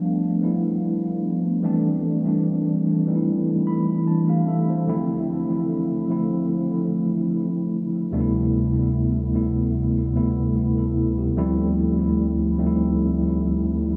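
A dreamy mix soaked in a huge, wet ambient reverb surrounds this short R&B piece, with a sense of small room ambience beneath the long tail. A lone tine electric piano carries the whole excerpt, sitting up front with a mellow, clean tone that sounds as if it comes through the instrument's built-in speakers, trailed by a diffuse ambient delay. The feel is sensual and late-night, in a relaxed 4/4 with a light swing on the sixteenths. The piano covers a broad register, from deep bass notes up into its upper range, moving through rich extended chords such as G9, C69, Dm7, Am7/D and Fmaj7/D. A fill on the electric piano from 3.3 to 4.9 seconds leads into a new passage at 4.9 seconds, which moves through its chords over a D in the bass until the piece is cut off at 14.0 seconds.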